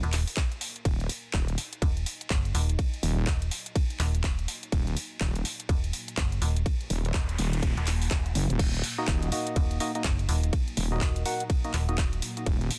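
Bass house at 124 BPM in Eb minor, this short cut from a longer piece feels bouncy and aggressive, with a 61% swing on the sixteenths giving the groove its shuffle. Two up-front basses carry the weight: a metallic, digital FM bass with tube saturation, and a heavy, detuned wobble bass that enters at 0.9 seconds with chorus and overdrive, both pumping against the sidechain. A tight electronic kick sits up front alongside a garage kit of handclaps, crash and ride cymbals and warm hi-hats, with both drum parts re-recorded in a small room. Beneath them, a very quiet, deep and moody pad holds sustained chords on Eb minor, its slow attack and built-in reverb adding a dark haze. A background noise sweep passes between 6.9 and 8.6 seconds, and from 9.0 seconds a hollow, nasal organ stab arrives with chorus and digital delay. The mix is dry, dense and heavily limited in a modern style.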